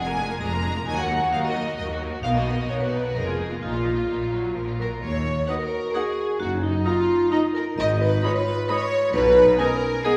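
In a straight three-beat lilt, this mischievous, sneaky cinematic cue, cut from a longer piece, pairs a bright, ringing vibraphone melody with distant violins on the tune and a smooth second violin line, over portamento-tinged violas, lush cellos and even bowed double basses, before mellow French horns add sustained chords at 4.8 seconds and a punchy tuba, a pure flute, a dark clarinet and a warm oboe join just after, the whole ensemble heard from further back in a reverberant concert hall.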